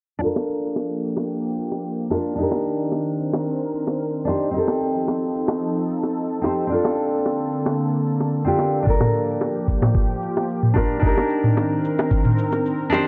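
Warm and smooth, this sunset chillout excerpt moves at 111 BPM in a straight 4/4, set in G minor and cut from a longer piece. A bright, full-bodied nylon-string guitar sits up front from the start, fingerpicked with fresh strings and audible finger squeak, running through a filter sweep and a delay as it carries the Gm7, Cm7, F7 and Bbmaj7 changes. A lush, thick pad of detuned sawtooth voices in unison enters at 0.7 seconds with a slow attack and long release, its chorus adding shimmer to the sustained chords. Produced electronic shaker and toms hold the groove alongside tight, high-tuned bongos that sound close and dry, and a knocking electronic kick drum pushes forward between 8.9 and 12.2 seconds. A moderate plate reverb surrounds the whole, while a worn cassette-tape character with warbly pitch drift and a softened top end gives it a warbling, old-tape tint.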